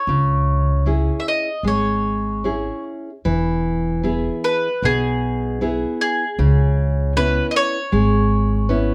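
A moderately reverberant studio sound frames this passionate, mournful fado-style ballad, cut from a longer piece and flowing in a rubato 77 BPM in 4/4. Up front, a woody mandolin picks the melody on its double strings, a full-bodied nylon-string guitar fingerpicks a deep classical accompaniment with audible finger squeak, and a dark, thumpy pizzicato upright bass on gut strings anchors the low end. The harmony rests on C# minor before turning to E major at 3.3 seconds, then settles on C#m7 at 6.4 seconds.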